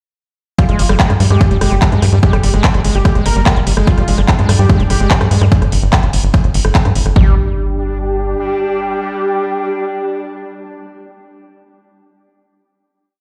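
Heard as if played on a big sound system in a bare room, with a large studio reverb and digital ambience, this short, driving psychedelic trance piece at 146 BPM opens straight into a drop at 0.6 seconds. A punchy, up-front four-on-the-floor electronic kick and a techno kit of metallic hats, claps and rim clicks drive it, while a tight, nasal sequencer bass rolls in sixteenths and a squelchy, gritty acid bass drifts its 3-step loop against the bar with slides, dub echo and sidechain pumping. A thick, detuned unison lead with vibrato, phaser and dub echo repeats its riff melody, and a bubbling, resonant stepped-filter drone with chorus enters at 3.9 seconds, carrying with the lead into a final chord from 7.2 seconds.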